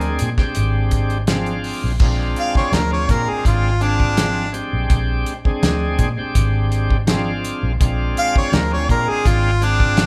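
Swaggering and gritty, this straight-eighth soul blues excerpt opens on a Bb9 chord with a smooth-topped harmonica up front, which moves into a solo at 2.0 s. A bright, lightly overdriven tonewheel organ shouts through a slow rotary speaker, a mellow, compressed clean electric guitar adds stabs in the background, and a round, punchy, foam-muted vintage bass sits under a cloth-damped, thuddy drum kit with a fat snare, tight kick and dark cymbals. The band sounds as if it is playing live together in one large studio room with moderate reverb.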